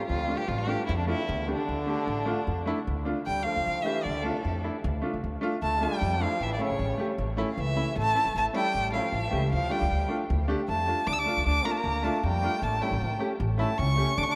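Klezmer at 154 BPM in D harmonic minor, tuned slightly low to A4 = 438 Hz, this bittersweet, festive cut from a longer piece moves between Dm and A and speeds up throughout. An expressive bowed violin with vibrato, portamento and a smooth top sits up front and takes a solo from 3.3 s. Beneath it, a bright trombone with light vibrato carries a present second line, a thumpy gut-string upright bass plays dark pizzicato up front, and a clear, woody, slightly detuned upright piano adds long-sustaining accompaniment, all set in the wet, echoing wash of a vast cathedral.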